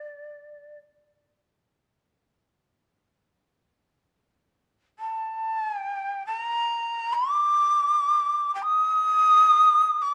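A breathy, end-blown bamboo shakuhachi carries this calm, austere fragment of Japanese traditional chamber music, sounding briefly at the start and then returning from 5.0 s to 10.1 s. Its tongued notes carry a chiff and an unsteady vibrato as it moves between D5 and Eb6. Light reverb surrounds the solo line within a dark, warm production.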